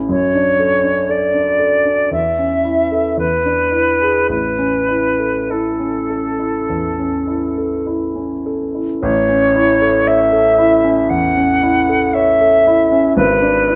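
Classical, romantic duo for flute and grand piano in A major, lyrical and serene, moving slowly at 49-61 BPM in 4/4 with a rubato feel. A pure, expressive silver concert flute carries the melody from A4 to F#5 with vibrato and a crisp attack, while the warm, natural grand piano accompanies through chords such as D/F#, A/E and E7. Both sit up front in a large studio with moderate reverb, and the passage is cut from a longer piece, ending on E7/G# at 13.2 seconds.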